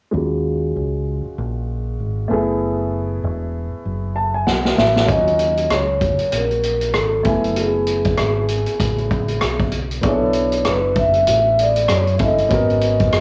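A woody, intimate upright piano with audible action noise and cassette-tape haze opens this smoky, nocturnal jazz-hop piece over a round, dark fingered dub bass, a filter sweep shaping the piano until a punchy, gritty vintage drum kit with a rolled-off top enters on a fill at 4.5 seconds, and at 5.1 seconds a mellow, ringing soft-mallet vibraphone takes the melody above swung minor-eleventh chords in a lightly reverberant small room.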